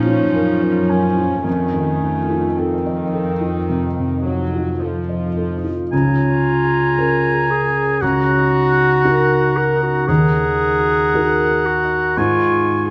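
In a rubato 4/4, this bittersweet, longing cinematic orchestral score sets a roomy solo clarinet's second line over a felt-muted upright piano's dark, intimate accompaniment, ringing harp arpeggios, a floating sul tasto viola section and a smooth, bowed cello section bass, until around 5.9 seconds the strings give way to a clear oboe with light vibrato and a pure, straight-toned flute carrying their own second lines, set in a moderate scoring-stage reverb and caught by close, detailed microphones.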